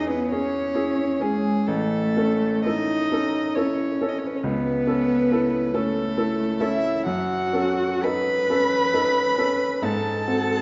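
Classical piano trio in a slow, elegiac romantic movement at 66 BPM in 3/4, its uneven, rubato pulse carrying a melancholic weight through a brief cut from a longer piece. An intimate, dark violin sings the melody up front with light vibrato and an airy sul tasto bow, while a woody cello with vibrato shapes a second line beneath it, and a clear, open baby grand supplies the accompaniment, with harmony moving from C#m/E through A and D#m7b5/F# to a tense G#7b9. The recital hall reverb is wet and the production dusky and mellow, with vinyl crackle lending an aged, faded patina.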